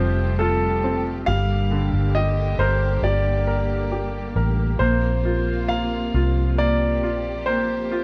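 Four parts sound together from the first moment of this tender, hopeful pop excerpt in Bb major, which moves at a slow 68 BPM in a straight 4/4. A clear grand piano carries the melody up front, its long natural sustain touched by a slapback echo. Beneath it, a brilliant upright piano plays the accompaniment with a woody, intimate tone, and its action noise is audible. A lush bowed string section holds smooth sustained chords with vibrato, while a dark, round, foam-muted electric bass sits punchy and forward at the bottom. The harmony moves from Fadd9 to Gm7 at 1.3 seconds and settles on Bbadd9 at 4.8 seconds, all captured in a dry, close 1970s-style studio sound.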